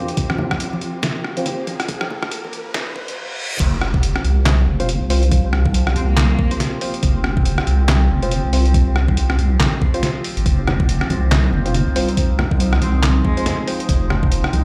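Deep dubstep at 140 BPM in a half-time 4/4 with a swung sixteenth feel, brooding and cavernous, cut from a longer piece. It opens on a build-up, where a bright, warbling drone of moving overtones sustains chords under hollow, nasal organ stabs with lush chorus and dub echo, while a background riser and reverse cymbal climb beside ringing, close conga hits and a filter sweep. An overdriven, knocking electronic kick and a gritty, pitched-down sampler-style kit of snare, rim click, hi-hat, handclaps and crash that sounds re-recorded in a small room are already playing from the first moments. At 3.6 seconds the drop lands: a deep, saturated wobble bass sits up front, anchored by that kick and kit. The organ stabs return at 4.8 seconds, and a rich, bowed cello with vibrato and portamento drifts in the background in brief echoed phrases, with the congas rejoining near the end. The whole mix is heard through a big sound system in a bare room, bathed in large studio reverb and thinned by a high-pass filter.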